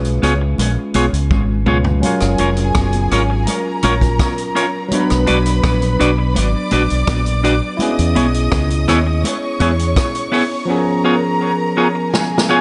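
Smooth and tender, this short lovers rock reggae passage moves at an unhurried 83 BPM in a straight 4/4, resting in F# major and cycling through C#7, F#maj7, Bm and E6 before returning to C#7. A deep, round fingered electric bass sits up front with a dark, punchy tone until 9.9 seconds, while a vintage acoustic drum kit with a punchy kick, medium-tuned snare, rim clicks, hi-hat and toms carries a dub echo and a natural small-room feel, adding fills at 1.3 and 12.1 seconds. A barky tine electric piano, bright and clean through a combo amp with a phaser, supplies the accompaniment, and a clean, picked electric guitar drops echoing stabs. Very quiet, high-tuned congas with a thin, damped skin tap softly in the background. From 2.0 seconds a studio string section enters with a soft-attack, sul tasto second line, intimate and close with vibrato and its own dub echo, all set in light reverb with a rolled-off top end.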